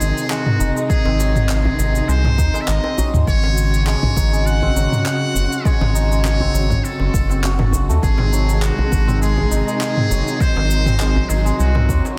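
Close and lightly reverberant in a small room, this dense, heavily limited cut from a longer piece is organic downtempo at 101 BPM in 4/4, with a gentle 16th-note swing and a meditative, mystical mood. A round, dark analog bass sits up front with a fast attack and sustained, wave-folded tone, beneath a deep house kit of cabasa, handclaps and toms re-recorded in the room. A soft-handed, saturated djembe joins in the background at 0.6 seconds, and a tape-warm electronic kick enters at 0.9 seconds. Bowed studio strings hold expressive chords with vibrato and sidechain pumping, as a bright, shimmering santur rings out hammered arpeggios through a delay. Over it all, a buzzy, thin trumpet with a metal mute plays a distant, jazz-style solo melody with light vibrato and delay, while the harmony moves from G# to F#sus2 at 3.3 seconds and back to G#.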